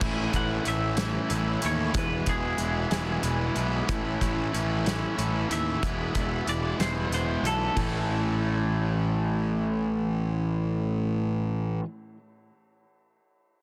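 Indie rock in 6/8 at 62 BPM and A major, wistful and jangly, alternating between A and E chords as two overdriven guitars, one crunchy and bright, the other warmer with subtle chorus and digital delay, play riffs over a fuzzy, up-front picked bass. A loose acoustic drum kit with a punchy kick, medium-tuned snare and dark cymbals pumps in a small room until 7.9 seconds. Above it all, a twangy clean guitar takes a solo melody from 0.4 to 7.8 seconds, shimmering with harmonic tremolo and delay in a dense, heavily limited modern mix.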